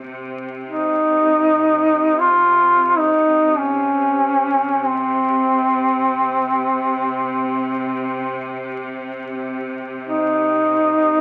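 Longing and mournful, this free-time Caucasian lament in C phrygian sets a warm, vibrato-laden duduk melody with scooped notes up front from 0.7 seconds over a bright, biting string-section drone on C3, all heard through moderate studio reverb and the crackle of a very old 78 rpm record in a short cut from a longer piece.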